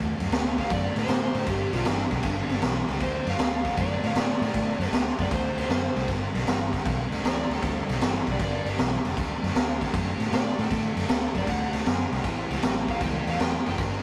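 Gritty and rollicking, this electric blues shuffle in D mixolydian swings along at 156 BPM in a rough rehearsal-room recording with light reverb, cut from a longer piece. A raw garage drum kit sits up front with a punchy kick, high-tuned snare and ride cymbal, saturated and mid-forward in a bright stone room. Beneath it, a dark, round, foam-muted fingered bass and a clean, compressed picked guitar riff in the background carry the changes from D7 to G and on to A, while an overdriven slide guitar sings the melody from 0.6 seconds.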